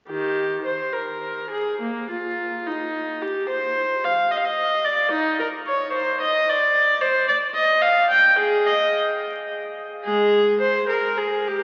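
In a flowing, rubato 6/8 at 72 BPM, this radiant baroque-style suite movement in Eb major has a single unaccompanied viola, reedy and gut-strung with a smooth top, bowed up front in period style between Eb3 and G5 from 0.1 to 11.6 seconds, heard through a drenching cathedral reverb on a very old, crackling 78 rpm record.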